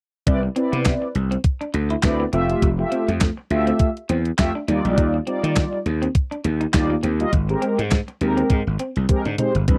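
A dry, close recording in a 1970s studio style carries this feel-good, danceable slice of early-eighties boogie funk at 102 BPM, swung on the sixteenths. A clean 12-bit drum machine with a thumpy kick, fat snare, hi-hat, handclaps and toms sits up front beside a growly, overdriven slap bass, while mellow synth brass, round and detuned with chorus and vibrato, sustains chords through Cmaj9, Fmaj9, Ebmaj9 and Abmaj9. A hollow-body electric guitar plays a clean, picked riff lower in the mix under lush chorus, and a drum fill arrives at 9.1 seconds.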